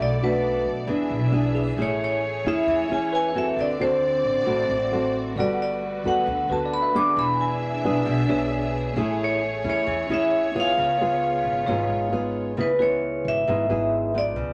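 Moderate studio ambience frames this melancholic, intimate bossa nova clip at 133 BPM, cut from a longer piece. A ringing, metallic vibraphone with medium hard mallets and motor off carries the melody over a full-bodied, thumb-plucked nylon-string guitar up front and a woody pizzicato upright bass, while a lush, bowed symphonic string section with vibrato holds sustained chords until 12.6 seconds and a bright, bell-like tine electric piano enters at 1.5 seconds in the background. The harmony moves from Bm7 and E7 through Amaj7, D7 and Gmaj9 before arriving on C#m7 as a new section begins at 12.6 seconds.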